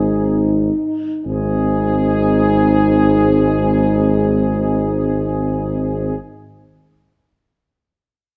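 Tender and warm, this short cut from a longer classical piece unfolds like a hymn for brass band. A trumpet section carries the melody from a distant, roomy position, while a tight French horn section holds a second line in the background. Beneath them, a solo euphonium and a very quiet trombone with a soft attack and smooth top fill in the accompaniment, and an up-front tuba anchors the bass. Every part is played with light vibrato, and the pace eases over the first 1.3 seconds. All five sound together until about 6.2 seconds, framed by moderate recital hall reverb in a dark production.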